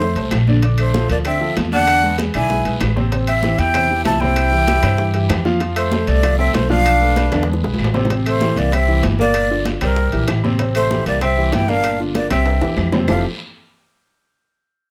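Afro-Cuban jazz at a brisk 193 BPM in F major, lively and sunny, with a breathy, expressive flute carrying the melody up front over a mellow, roomy tenor saxophone second line, natural baby grand piano accompaniment through chords such as Bbmaj9, E7 and Am7, and a woody pizzicato upright bass. Ringing high-tuned congas, tight bongos and saturated metal-shell timbales sit in the background, joined by a raspy, distant guiro and very quiet, distant claves, with drum fills at 7.3 and 12.3 seconds, all captured with close, detailed microphones and light reverb.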